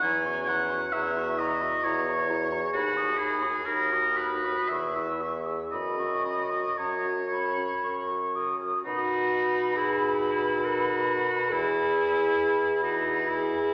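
An up-front, clear oboe with light vibrato sings a second line beneath a hollow, pure concert flute melody with vibrato in this lyrical, tender excerpt from a slow romantic classical movement for wind quintet in B major, moving in a rubato 3/4 at 56-70 BPM, with a clarinet in the background and a warm French horn as accompaniment, a mellow bassoon with vibrato carrying the bass, and the whole quintet bathed in a wet concert hall reverb as the harmony settles onto B at 8.9 seconds.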